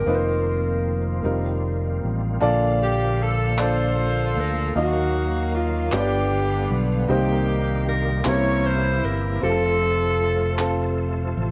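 The recording has the worn, warbling character of old cassette tape, its pitch drifting gently, set in a moderate echo-chamber reverb. This slow, uplifting gospel passage in Bb major sways in 6/8 at 51 dotted-quarter beats per minute, cut from a longer piece. A warm alto saxophone opens on a single pitch, Bb4, with vibrato and scooped jazz inflection, ending by 1.6 seconds over suspended F chords. A boxy grand piano, a dark, round and punchy fingered electric bass sitting up front, and a reedy, bright tonewheel organ with key click, fast rotary speaker and chorus vibrato in the background carry the harmony throughout. At 2.8 seconds a mellow, soft-attacked saxophone section takes up the melody with jazz-style vibrato, and hollow, close handclaps join at 3.6 seconds as the chords move from Bbmaj7 through Ebmadd9, G7 and Cm7 to a hopeful resolution on F.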